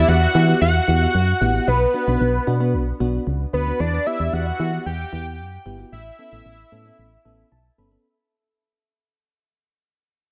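Synth-pop at 113 BPM in a straight 4/4, this short excerpt from a longer piece feels driving and cool, and the whole passage fades out over its 8 seconds. A fat, detuned sawtooth-and-square analog lead with a sub octave carries the melody up front, its sustained notes coloured by vibrato, chorus, phaser and analog delay before it drops out at 7.5 seconds. Beneath it, a soft, dark FM electric piano with a noise layer and chorus supplies the accompaniment, adding a fill between 7.0 and 8.0 seconds. A punchy, round FM bass sits up front with a fast, decaying attack, anchoring the harmony as it moves from Em to Bm, back to Em and on to Aadd9. Moderate spring reverb and an echo-heavy mix give the sound a spacious character, with the track pitched slightly low to A4 = 438 Hz.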